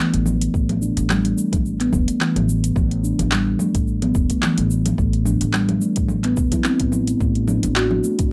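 A steel tongue drum leads this meditative, mystical slice of organic downtempo, playing round, ringing arpeggios up front through a low-pass filter and tape echo, with a filter sweep running across its whole span. Beneath it, a woody upright bass plucked on steel strings holds the low end with a thumpy pulse that carries a sidechain pumping effect. A deep house drum kit of cabasa, congas, handclaps and metallic hi-hats sets a gently swung groove at 108 BPM in 4/4, and an electronic kick drum with a deep, tape-warm tone joins at 0.5 seconds, both sitting in a small room ambience. The harmony rests on an A5 chord before shifting to a rootless Bm7 at 7.2 seconds. The sound has a moderate studio reverb and the rough feel of a home demo mix, and the passage is cut from a longer piece.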